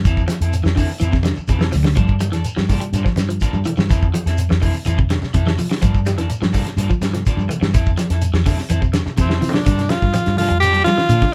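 A clear, forceful tenor saxophone cuts in up front at 9.2 seconds, its punchy pop-style solo carrying a light vibrato over the closing stretch of this intense, defiant afrobeat excerpt in G dorian at 125 BPM. Beneath it, a damped 70s drum kit sits dry and dark, with a fat snare and tight kick, and marks the saxophone's arrival with a fill before the harmony settles on Gm9. A vintage muted fingered electric bass supplies a round, foam-muted low end, while one slightly broken-up electric guitar picks arpeggios through a phaser and a second, darker guitar adds picked stabs. Grainy shekere and bright, low-tuned congas with a thin skin fill the background. The chords alternate between Fmaj7 and Gm9, and the band plays together in a small, wet-sounding room.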